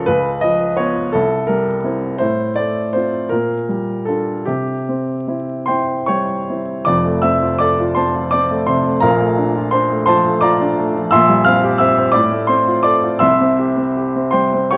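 A lilting 6/8 pulse, pushed and pulled with free rubato, carries this lyrical romantic character piece, an excerpt cut from a longer work. A solo baby grand piano, natural and up front with a warm tone, spans from the deep bass to the high treble, moving from an opening on a Db7 chord into a second passage from 6.9 s that settles through Bbmaj7 and C7 harmonies. A moderate recital hall reverb gives the piano an airy bloom, while vinyl crackle lends the recording a nostalgic patina.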